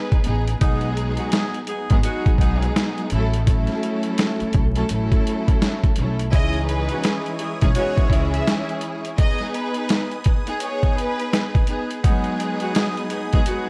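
A gritty, pitched-down sampler drum kit with a thumpy kick and high-tuned snare swings its sixteenths at 84 BPM in 4/4, setting a tough, reflective boom-bap groove in C# minor over vinyl crackle and small-room ambience. Lush bowed strings with a cassette-tape coloring carry the accompaniment throughout, a woody pizzicato upright bass anchors the low end until 8.4 seconds, and a jazz-style saxophone section adds stabs with delay. At 6.3 seconds a smooth-topped violin section takes up the melody with delay, while a thick, detuned, chorused synth pad sustains chords in the background of this excerpt.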